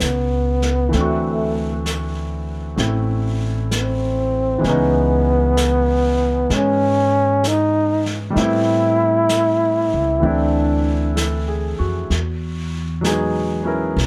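A warm, vibrato-laden trombone carries the melody in this wistful, intimate jazz ballad, its soft-attacked, scooped notes sounding up front yet roomy before it falls silent at 11.2 seconds. A clear grand piano supplies the extended chords, a woody, thumpy pizzicato upright bass with steel strings sits up front, and a distant vintage kit of brushed snare and hi-hat adds a gentle swing from a small room, its top end rolled off. The dry sound suits this short passage, which is cut from a longer piece.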